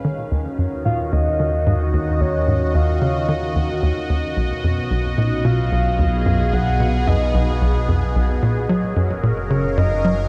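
Hypnotic and expansive, this ambient excerpt in Eb minor moves at 111 BPM in a straight 4/4, drifting through Ebm7, B6 and Gbmaj7 inside a huge, dark reverb with a long 7.9-second tail. A tight, punchy sequencer bass drives a plucky sawtooth riff from the opening, joined at 0.8 seconds by a nasal, evolving analog drone and cradled by a swirling, detuned pad shimmering with phaser and chorus. From 0.9 seconds a soft, octave-layered lead sings a round, full-bodied melody high in its register, its vibrato tinted with cassette tape coloring, delay and phaser.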